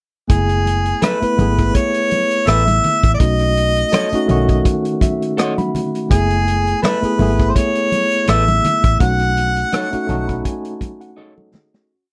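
Smooth and bittersweet, this 1970s-style soul piece in F# dorian eases along at 83 BPM with a gentle sixteenth-note swing, as an up-front, roomy harmonica with light vibrato sings a motif-based melody over a worn, slightly out-of-tune, lightly overdriven tine electric piano pushing rootless F#m11 and B9 chords with short fills at 4.7 and 9.7 seconds, a dark, round, foam-muted fingered bass with ghost notes, a small-room drum kit with a punchy kick and rolled-off top, soft-handed, thick-skinned congas in the background, and slightly broken-up guitar chops on the backbeat, set in a dry, close studio sound that fades out from 9.0 seconds into a closing drum fill.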